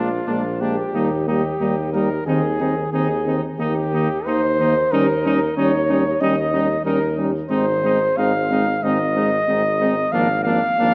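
Stately and warm, this short classical brass quintet passage moves at a rubato 92 BPM in Eb major, drawn from a longer piece, with chords that pass from Bb7 through Eb, Ab and Eb7 before settling on Bb7/Ab at 10.1 seconds. A mellow cornet carries the melody up front with light vibrato and a smooth top, while a distant, roomy trumpet adds a clear second line and a French horn with gentle vibrato sits in the background beside a soft-attacked trombone. Beneath them, a clear tuba with a vintage character anchors the bass, and a concert hall reverb with a 2.2 second decay surrounds the ensemble.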